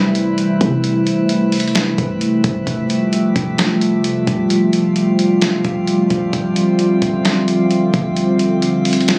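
Captured on a phone in a room with a club-like reverb, this brief excerpt of dreamy, floating cloud-rap moves at 131 BPM in a half-time 4/4 feel over Cmaj7, Fmaj9 and Dm11. A dark, moody analog pad sits up front with detuned, wave-folded sustained chords, chorus and sidechain pumping, while a deep, boomy 808-style bass decays in the background. A glassy texture of drifting overtones floats above with chorus and its own reverb, and a compressed, muffled sampler-style kit enters at 0.1 seconds with a thumpy kick, medium-tuned snare and hi-hat.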